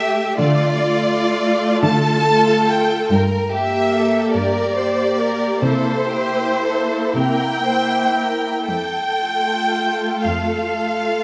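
A slow, romantic classical movement for string orchestra opens with all four sections sounding together from the start: a rich violin section carries the melody up front, soft in attack and expressive with vibrato. Beneath it a second violin section traces a clear, focused line close by, while a lush viola section fills in the accompaniment and a smooth-topped cello section holds the bass. The pulse moves in a rubato 12/8 at roughly 36-49 beats per minute, counted in dotted quarters, in F major, and the mood is warm and serene. The harmony drifts from Dm through Gm and C7 before settling on F at 8.7 seconds. A moderate scoring-stage reverb gives the bowed ensemble a gentle bloom across this 11.2-second fragment of a longer piece.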